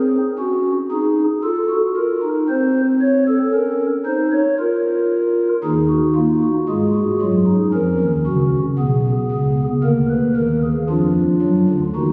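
Classical baroque-style three-part fugue in a serious, driving mood, played in straight 4/4 by a solo pipe organ whose stopped flute registration sounds soft, hollow and mellow with a romantic voicing, sitting up front in a wet church reverb with a 2.8-second decay captured on a phone in the room, cut from a longer piece and lasting 12.1 seconds.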